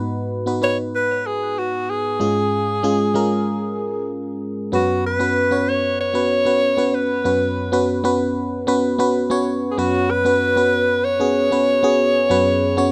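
A straight 4/4 pulse at 95 BPM drives this urgent, moody pop fragment, where a glassy, bell-like FM electric piano with chorus and a noise layer plays the accompaniment up front from the start, a clear alto saxophone with vibrato and tape echo takes the solo melody from 0.6 seconds, and the harmony moves from B over G# to C# over G# before settling on F#sus4 at 4.7 seconds, all in a moderate booth ambience.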